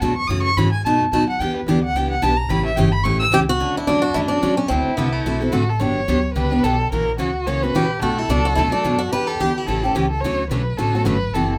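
Acoustic string swing in the jazz manouche style, lively and playful, opens with an expressive bowed violin solo rich in vibrato and portamento over a bright, full-bodied picked steel-string guitar with audible finger squeak and a woody, growly pizzicato upright bass, before a boxy picked swing guitar takes the melody at 3.3 seconds and again at 7.8 seconds, the band captured playing live together in a small room with moderate reverb.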